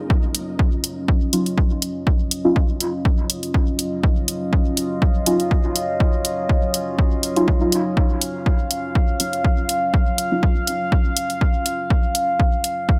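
A dark analog pad of moody sawtooth and triangle tones with a sub octave opens this meditative, cavernous dub techno excerpt. It arrives alongside a soft, deep chord stab built on an Ebm9 harmony. The pad's slow attack lets its sustained chords bloom up front through chorus and phaser. Both pad and stab pump against the sidechain, and the stab's detuned, ring-modulated tones carry a moving notch, a filter sweep and a dub echo that trails each fast, decaying hit until it stops at 10.4 seconds. A dry, punchy electronic kick enters at 0.1 seconds with a gritty overdriven edge, and an equally dry, overdriven hi-hat sits up front with it over a lightly swung sixteenth-note feel. A moderate plate reverb and bright 1980s-style digital production give the cut a glassy depth.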